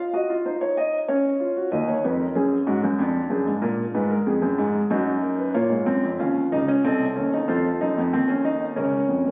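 A phone in the room has caught this recording, which carries a moderate scoring-stage reverb with a 1.6-second decay, plus studio reverb and compression that round out the space. It is a short excerpt cut from a longer piece: a baroque-style four-part fugue in 3/4 for solo grand piano, with a solemn, contemplative mood and a straight feel. The concert grand sits up front, its tone warm with a deep bass, and its range stretches from C2 up to F5. The piano sounds from 0.1 to 9.3 seconds, moving through a minor-key harmony that passes from Dbadd11 and Ebm through diminished chords and dominant sevenths such as Bb7 and F7. The passage closes on Bbm/Db.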